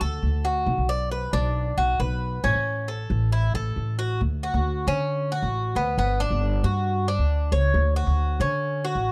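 Sunny and danceable, this short Cuban son and guajira passage is carried by a picked Cuban tres, whose metallic double strings, some doubled at the octave, spell out warm arpeggios up front. Beneath it, a pizzicato upright bass with woody, thumpy gut strings adds a dark pulse that sits slightly louder in the mix. The sound is dry and close in a 1970s-style studio, and at 4.2 s the harmony shifts to major-seventh chords.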